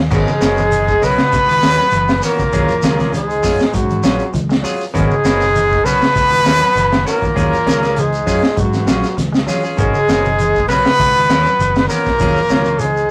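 Afrobeat excerpt at 99 BPM in G# dorian, driving and funky, where a breathy, up-front trumpet carries the melody with vibrato over raspy tenor and soft-edged baritone saxophone lines, a round fingered electric bass, picked clean guitar stabs, quiet hollow-body guitar arpeggios, a gritty, punchy breakbeat kit with a high-tuned snare, thick-skinned congas and a grainy shekere, all cycling between G#m11 and D#m11 in a rough, saturated rehearsal-room sound with a short booth ambience.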